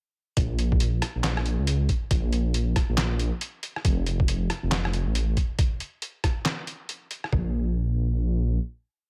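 Deep dubstep at 138 BPM in Bb harmonic minor, cavernous and meditative, with a half-time feel and swung 16ths across a short whole piece that is all drop from 0.4 seconds until a final note rings out after 7.3 seconds. A dark detuned saw bass sits up front with deep, rumbling, beating tone and long gliding sustained notes, carrying on to 8.6 seconds. Sampler-style trip hop drums, compressed, pitched down, gritty and tape-warm, pair a thumpy kick and floor tom with closed hi-hat, rim click, handclaps and a medium-tuned snare in a small room, all set close and dry.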